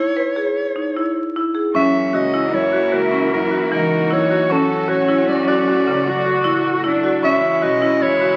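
This hypnotic, urgent excerpt of contemporary chamber music in 7/4 at 153 BPM opens with a close-miked, jazz-style soprano saxophone carrying the melody with vibrato over bright, woody marimba arpeggios struck with hard mallets. At 1.7 seconds a smooth, distant bowed cello adds a second line, a biting, earthy studio string section holds sustained chords, and a dark pizzicato upright bass sits in the background as the harmony moves from F#7 to Dmaj7 and E6. The sound carries the crackle of a very old 78 rpm record inside a wet recital hall reverb, and the excerpt is cut from a longer piece.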